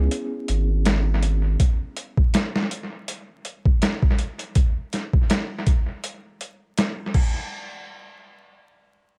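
A gritty, compressed boom bap sampler-style drum kit with a thumpy kick, medium-tuned snare, hi-hat and crash carries this dark, smoky trip hop excerpt at 81 BPM with a light 16th-note swing, running from 0.1 to 7.3 seconds, while a round, deep analog bass and a reedy electric piano with harmonic tremolo and tape echo sound a C#m7 together from the start until 1.6 seconds, all in an echo-heavy mix with vinyl crackle.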